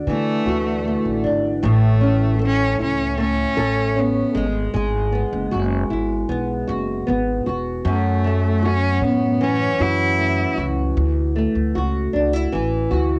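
A rich, bowed cello carries the melody with vibrato, an intense tone and a smooth top, singing until 10.6 seconds in this sunny, carefree acoustic pop excerpt at 77 BPM in A major. Beneath it, a small, fingerpicked nylon-string guitar with fresh strings is double-tracked and given a cassette-tape tint, while a woody, thumpy pizzicato upright bass on gut strings anchors the low end. The chords move from Dadd9 through A, Eadd9 and F#m7 before returning to Dadd9, all in a light-reverb home recording on cassette that keeps each part up front.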